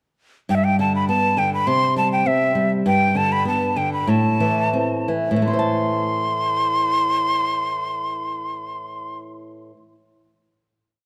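In a straight 2/4 pulse that slows from 2.9 seconds, this wistful, melancholic Andean folk piece pairs a breathy, reedy cane quena, up front with vibrato and tongued song-like motifs, against a fingerpicked flamenco guitar of fresh strings laying bass notes and chord figures over G, C5 and A minor, before both settle on a final chord at 5.4 seconds in a concert hall's moderate reverb.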